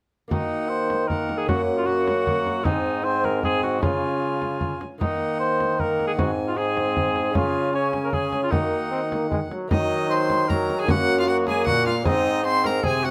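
A steady 3/4 pulse at 153 BPM carries this rustic, courtly renaissance-style consort dance in Eb dorian, cut from a longer piece, with a close, dry frame drum adding percussion while a reedy, nasal gut-string violin played by one bowed player leads the melody. A mellow cor anglais with light vibrato sings an up-front second line, a brilliant, vintage trombone and a delicate fingerpicked lute with doubled strings sit in the background as accompaniment, and a bassoon with gentle vibrato anchors the bass. Close, detailed microphones capture the ensemble in a moderate stone room, as a phrase built on Ebm, Gb, Ab and Db returns at 9.7 seconds.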